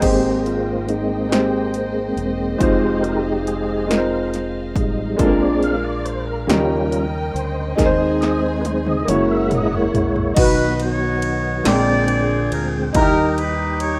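A slow, hopeful gospel piece in 6/8 and Ab major at 46 BPM, cut from a longer work, opens with a lightly overdriven tonewheel organ soloing through a slow rotary speaker with key click, over a boxy baby grand piano, a round fingered electric bass, punchy tape-warm analog drum machine and woody, lush bowed strings. A drum machine fill leads to 10.4 seconds, where the strings stop and a dark, loose jazz horn section takes up the melody, sounding roomy yet up front. The rough home-demo mix sits in a small room with a modest reverb.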